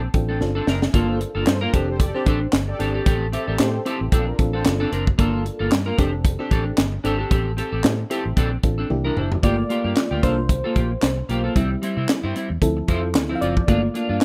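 A full-bodied FM electric piano with tremolo opens this slick, danceable early-eighties boogie funk fragment with a short fill, alongside a chorused clean electric guitar riff, a dark, foam-muted fingered bass and a tight, up-front funk drum kit with a high-tuned snare, toms and handclaps. A detuned sawtooth synth brass with phaser adds a second line from 1.1 to 4.6 seconds, and the electric piano takes a solo from 9.4 seconds, all in a rough home-demo mix with studio ambience.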